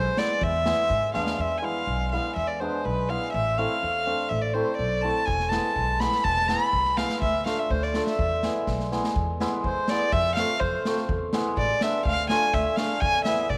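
A straight 2/4 pulse at 124 BPM drives this bittersweet, festive klezmer in E phrygian dominant: an intimate, up-front bowed violin with light vibrato and an airy sul tasto tone carries the melody over shimmering, ringing hammered dulcimer and woody pizzicato upright bass, while a street-band drum kit with a boomy kick and medium-tuned snare plays from 0.2 s, drops out at 1.4 s and returns at 5.3 s, the whole mix set in a wet spring reverb.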